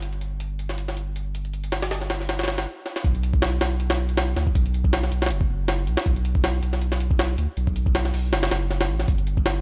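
A gritty, pitched-up jungle drum kit leads this raw, nostalgic drum and bass clip, its thumpy kick and high-tuned snare overdriven and placed up front with a compressed, sampler-style bite and a touch of small room ambience. Beneath it, a deep, thick sub bass with a triangle-like tone and tube saturation holds long, sustained notes with a fast attack, sitting just as far forward. The groove carries a light swing on the sixteenths. After an opening passage, everything halts briefly at 2.7 seconds, a drum fill lands at 2.9 seconds, and the drop hits at 3.0 seconds and runs to the end of the cut. The production is dark and warm with light reverb, giving the piece a dusky, old-school character.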